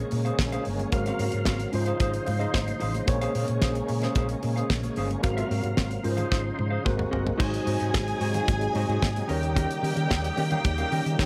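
A studio-ambience recording carries this sultry, danceable disco excerpt at 111 BPM in 4/4. A dry, up-front damped 70s drum kit with a fat snare and tight kick, very quiet high-tuned congas, and a round, dark hollow-body fingered bass move under chords from Bbm9 through Ab13 and Dbmaj9/Ab. A thick, gritty overdriven tonewheel organ with key click, chorus vibrato and a slow rotary speaker holds sustained chords, and a clean, compressed mellow electric guitar with spring reverb fills out the accompaniment alongside a worn, slightly out-of-tune tine electric piano in the background, which adds a fill at 2.0 seconds before a drum fill at 6.3 seconds; at 7.4 seconds a lush, woody bowed string section enters with a close second line as the harmony shifts to Ab7 and then Eb7.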